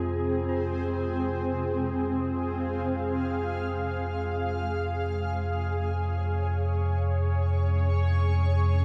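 Unsettling and cavernous, this dark ambient drone unfolds in free time in F minor, tuned to A4 = 441 Hz, and is cut from a longer piece. A deep, ominous rumbling drone sits up front between F2 and C3, its triangle and sawtooth tones carrying a slow attack, long release, built-in reverb and subtle chorus, while a filter sweep runs across it for the full 8.8 seconds. Above it, a cloudy granular pad holds blurred, evolving chords in unison from C4 to F5, its soft onsets and long tails washed in its own reverb. In the background, a gamelan-type bronze metallophone rings out smooth, metallic arpeggios on F4 through a delay, falling silent at 4.5 seconds. The harmony moves from F minor to D-flat minor at 5.4 seconds, all set within a huge ambient space whose reverb lingers for 8.5 seconds.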